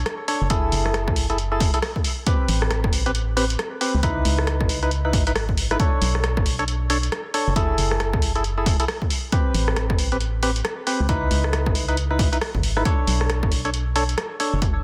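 Moody and bouncy, this short cut from a longer UK garage track rides a two-step groove at 136 BPM in 4/4, with a 61% swing on the sixteenths and a B dorian tonality. An organ-like FM bass anchors the low end from the very start, its hollow, dark tone striking with a fast attack and then decaying. A punchy analog drum machine supplies hi-hat and rim click, its snare roughened by soft clipping, while a separate electronic kick drum enters at 0.5 seconds; both drum parts carry the character of being re-recorded in a small room. Mellow, up-front organ stabs built from sine and triangle tones with a noise layer add percussive chords, treated with subtle chorus and digital delay. The harmony cycles through lush minor ninth chords, starting on a rootless Bm9 and moving through F#m9, Am9 and C#m9 before returning to Bm9. Light reverb and digital ambience surround a dense, heavily limited modern master.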